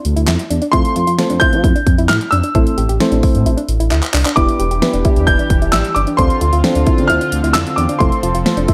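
A baby grand piano carries the high melody with a present, tape-echoed tone in this upbeat, bright synth-pop excerpt at 132 BPM. It rides over punchy, up-front electronic drums with handclaps, a fat snare and a fill at 3.9 seconds, plus a smooth, gliding sawtooth bass with portamento and vibrato. Gentle warbling electric-piano-like keys and a soft, nasal pluck playing chorused arpeggios fill the middle, and a shimmering pulse-width pad enters at 4.4 seconds, all within a dark, warm production with light reverb moving from Dm through F, Am and Em7.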